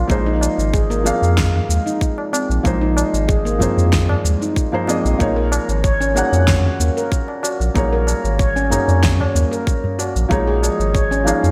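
A tight electronic kick and a fat, overdriven layered shaker and snare set a straight 4/4 pulse at 94 BPM, the snare and shaker carrying gated reverb and both drum parts sitting in a small room ambience, while a low-tuned, close and dry tabla rings in the background. This organic downtempo excerpt has a warm, mystical mood, anchored by a deep, round sine sub bass that sits up front between Ab1 and F2. Up front as well, a bright, airy stainless-steel handpan spins meditative arpeggios with sharp finger strokes and a touch of delay. Alongside it, a soft, mellow felt-muted upright piano plays intimate accompaniment, colored by sidechain pumping and delay. The harmony moves from Abadd9 at 0.1 seconds to Gb at 5.2 seconds and arrives on Dbsus2 at 10.3 seconds, all framed by a moderate plate reverb and a bright 1980s-style digital production.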